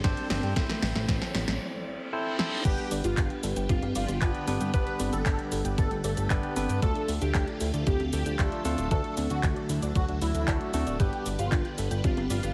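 A fat, detuned analog bass sits up front in this melodramatic, nostalgic italo disco clip, joined by a thumpy electronic kick, a punchy house kit of snare, bright hats, handclaps, congas, cabasa and crash, barky tine electric piano stabs, a swirling, vintage phased string machine and soft round plucked arpeggios in the background, while an electronic riser and reverse cymbal fill the opening 2.6 seconds before a thick, bold unison lead with vibrato carries the melody from 2.7 seconds, the whole mix heavily compressed into a radio-like sound with light digital ambience.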